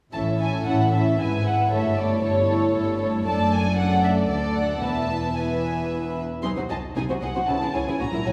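An up-front violin section carries the melody, its bowed, sul tasto tone soft in attack, pure and floating, in this cheerful, graceful excerpt from a quick classical-period movement for string orchestra in A major. Set in 3/4 at 114 BPM with a rubato feel, the music runs from 0.1 to 8.3 seconds, with every section of the ensemble playing throughout. A second violin line sits just beneath the tune, while the violas fill in the accompaniment with a darker, woody, lush sound touched by vibrato. Cellos add a rich bass, and the double basses sit lower and more distant, all bowed sul tasto. The harmony moves from A through E/G#, A7/G, D/F# and E before turning to G#7/B# and settling on C#m. A scoring-stage reverb with a 1.7-second decay places the orchestra further back in the room.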